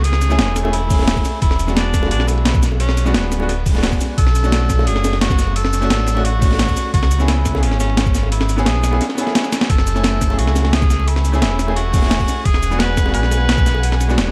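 This soulful, rolling liquid drum and bass cut at 174 BPM in F# minor opens with a clear tenor saxophone melody, lightly vibratoed and treated with delay, over an intimate grand piano with audible action noise and digital delay. Beneath them sit a deep, full sine sub bass with octave up front, a gritty, tape-toned sampler-style breakbeat kit of cabasa, hi-hat and snare, and a barely audible electronic downlifter that lasts until 1.4 s. A crunchy, saturated second breakbeat kit with dark cymbals and a high-tuned snare stays in the background, along with distant, tight bongos and a thumpy, compressed electronic kick, as the chords move from a rootless F#m9 through E7, Bm7 and C#m7; after a drum fill at 9.5 s, a smooth, detuned sawtooth analog pad with chorus and sidechain pumping enters at 9.7 s, deep in a dark small-room production.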